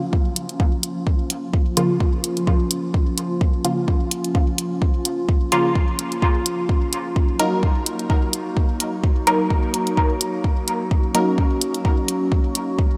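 A filtered dub chord stab sits up front, its muted, detuned sawtooth tone plucking with a fast attack and short decay, colored by chorus, phaser and dub echo, and pumping with sidechain compression until it drops out at 11.4 seconds. This nocturnal, deep dub techno cut from a longer piece moves at 128 BPM in 4/4 with a light swing on the sixteenths, centered in Bb minor and tuned slightly high to A4 = 443 Hz. Beneath the stabs, a warbling, nostalgic pad built from square and triangle waves holds sustained chords with a slow attack, its lo-fi, wave-folded texture softened by chorus, its own reverb and sidechain pumping. An electronic kick drum and hi-hat, both layered and re-recorded in a small room, sit forward in the mix, the kick carrying a deep low end. The harmony rests on Bbm before shifting to Ebm at 7.2 seconds, and a huge ambient reverb with a long tail leaves the whole mix dreamy and drenched.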